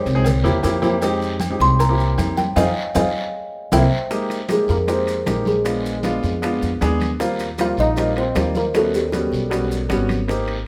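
Fiery and sophisticated, this Afro-Cuban jazz passage, cut from a longer piece, opens with a hollow, woody kalimba taking a solo over a see-sawing C7 and Fm7 vamp for the first 4.1 seconds. An intimate concert grand piano with audible action noise and a deep low end sits up front, joined by a dark, thumpy pizzicato upright bass on gut strings. The percussion bed layers thick-skinned congas and ringing metal-shell agogo bells and timbales in the background, very quiet round, low-tuned cowbell and bongos, a raspy guiro and grainy maracas. A drum fill and band accent arrive at 2.6 seconds, and the harmony then opens onto Fm11, Bb7b9, Eb69 and Eb7alt. From 4.5 seconds a warm trombone adds a jazz-style second line in the background, its vibrato and scooped notes colouring the light reverb.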